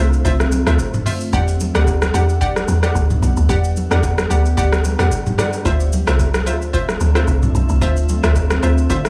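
This dry, gritty hardware recording sits in a small room ambience with a digital sheen, cut from a longer amapiano piece at 111 BPM in 4/4, with a 16th-note swing in E phrygian and a soulful, hypnotic mood. Up front, a woody, punchy log drum bass carries the low end with fast-attack, decaying FM notes and a noise layer. Beside it, a booming analog drum machine, re-recorded in a large room, lays down a deep kick, metallic hi-hats, rim clicks, shaker and toms, while ringing, medium-tuned congas played with hard hands enter at 0.4 s, close and dry in the background. A bright, detuned analog pluck built from sawtooth and square waves fires round, filter-plucked stabs through chorus and analog delay. Behind everything, a glassy, ethereal FM pad holds slow-attack, mellow chords with ensemble chorus, reverb and sidechain pumping, moving from Dm9 to Em9 at 1.3 s and back to Dm9 at 5.7 s.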